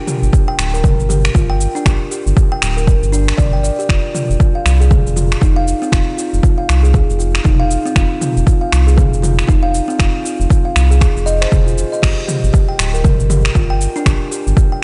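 Driving and spiritual, this afro house excerpt moves at 118 BPM in F dorian with a swung 16th-note feel, a ringing, woody kalimba spinning arpeggios through sidechain pumping and delay. Underneath, a round, dark analog bass blending square, sine and triangle waves with a wave-folded edge pumps alongside a deep, overdriven electronic kick sitting up front, while a layered deep house drum kit of cabasa, crash cymbal, finger snaps and toms adds its own overdriven grit. The kit and kick carry the sound of a large room, all within a digital ambience that rolls off above 10.6 kHz.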